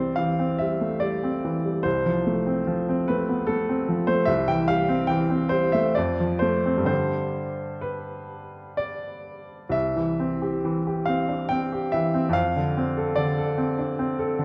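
In a flexible, rubato triple metre, this romantic classical character piece for solo upright piano unfolds with a hopeful, passionate mood, as if lifted from a longer work. The piano sounds woody, clear and slightly vintage, sitting up front and spanning C2 to G5 across the full 14.4 seconds, as the harmony moves from C through F and G before settling on F6. A wet recital-hall reverb and a dark, warm production surround the instrument.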